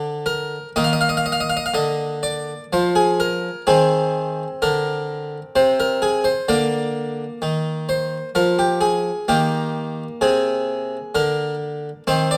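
A brilliant, close-miked Italian-style harpsichord with octave strings plays alone and up front in this grave, solemn baroque-style suite movement in 3/4, its plucked tone carrying a rubato feel through a moderate recital-hall reverb in a short passage cut from a longer piece.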